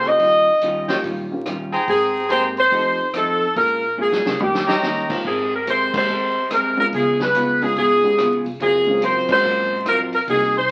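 Big band swing in Ab major at 143 BPM, this brassy, swinging fragment sets an up-front saxophone section carrying the melody against clear trumpet stabs with light vibrato that stop at 5.2 seconds, while a clean hollow-body electric guitar, a slightly detuned upright piano with audible action noise, a woody pizzicato upright bass and a vintage drum kit with a tight kick support it through changes like Abmaj9, Db7 and Gbmaj9#11, a drum fill from 4.0 to 4.8 seconds and band accents at 5.9 and 9.2 seconds, all heard through wet studio reverb and the crackle of a very old 78 rpm record.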